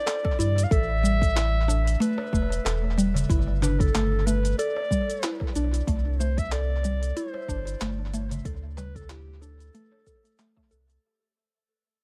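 Organic downtempo at 93 BPM with a lightly swung 16th feel and a mystical mood, this short cut from a longer piece sets a smooth-topped solo clarinet melody, run through tape echo, over woody FM mallet-like synth pluck arpeggios treated with chorus, phaser and dub echo, a gritty overdriven sampler-style kit of cabasa, handclaps and hi-hat, a deep layered electronic kick, a round sine sub bass pumping up front with tube saturation, and a soft-handed clay darbuka in the background, moving through D5, Asus2, G5 and C5 in an echo-heavy mix that fades out from 4.2 seconds to 11.0 seconds.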